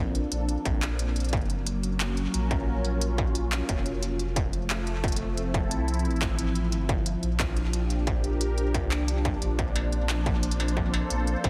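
Playful and wistful, this short IDM fragment, cut from a longer piece, unfolds in a straight 4/4 over a gentle chord cycle that moves from Bbmaj9 through Gbmaj7, Fmaj7 and Gm7 before returning to Bbmaj9. A swirling, airy analog pad, built from detuned sawtooth tones with a noise layer, carries the sustained chords up front, its slow attack and long release shaped by phaser and chorus. Beneath it, a deep, round sine sub bass sits close and mellow, while an industrial drum kit of smooth hi-hats, handclaps and struck metal enters at 0.1 seconds with delay trailing its hits. A distorted electronic kick joins at 0.7 seconds, both drum parts carrying a tape-like warmth and the air of a large room. Near the close, at 9.9 seconds, a very quiet flickering, grainy texture of detuned triangle tones drifts in, and the whole passage has a heavily compressed, radio-like sound with a touch of light reverb.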